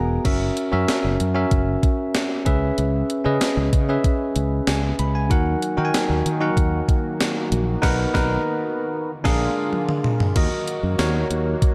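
Dark, lightly reverberant production frames this dramatic, urgent 1980s-style pop fragment, cut from a longer piece. A bell-like tine electric piano, bright and clean, carries the accompaniment up front from the start, adding fills at the opening and again near the close. A round, punchy fretless electric bass holds the low end. A gated 80s digital drum machine, sampler-style and tape-tinged, sits prominently with a thumpy kick, gated reverb snare, hi-hat, tambourine, toms and crash cymbal. At 5.3 seconds a lush, thick sawtooth unison pad with a slow attack enters in the background, detuned and airy with a noise layer, colored by chorus and phaser. The chords move from F#7 through C#m7, D#m and Bmaj7 to A#7 as the band hits accents and the drums fill, before a new section arrives on Ebm at 10.4 seconds.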